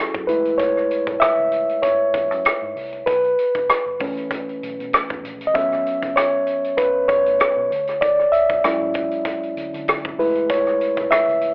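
A reedy, clean electric piano leads this lush 1970s-style soul excerpt, sitting up front with a direct tone colored by cassette tape and plate reverb as it carries the solo from 0.0 to 11.5 s. At 97 BPM in 4/4 with a gentle swing on the sixteenths, the mood is warm and smooth. The piano's rich harmonies move from F#m9 through B7sus4, A69 and Dmaj9#11 before returning to F#m9. A vintage acoustic drum kit of hi-hat, kick drum and rim click sits up front with a tight kick and a rolled-off top, its natural small-room sound also tinted by cassette tape. Beneath them, a dark, round, foam-muted fingered electric bass stays amped but in the background. The whole piece has the intimate feel of a home cassette recording with a telephone-like sound and a modest small-room reverb.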